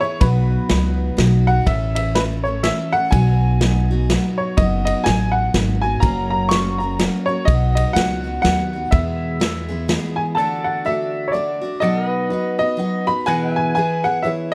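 Honky-tonk and classic country in an easygoing, nostalgic 3/4 at 124 BPM with a swung feel, where a clear, slightly detuned upright piano carries the melody over a bright picked steel-string acoustic guitar, woody pizzicato upright bass and a punchy vintage drum kit of kick, snare and ride, until bass and drums drop out near 10.0 seconds and a twangy pedal steel guitar enters with sustained chords at 10.4 seconds, joined by a mellow, boxy baby grand piano in the background, all in a dark, lightly reverberant production.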